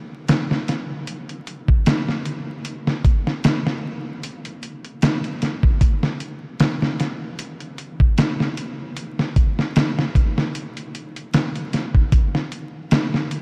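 Trip hop at 76 BPM in 4/4 with a light 16th-note swing, smoky and melancholic in mood, this excerpt from a longer piece features a dusty soul sampler-style drum kit of hi-hat, thumpy kick and fat snare, entering at 0.3 seconds and running to the end at 13.4 seconds. The kit sits up front, compressed and gritty with vintage 12-bit sampler crunch and studio reverb. Around it, a dreamy mix soaked in a huge ambient reverb and vinyl crackle gives the groove a hazy, nocturnal feel.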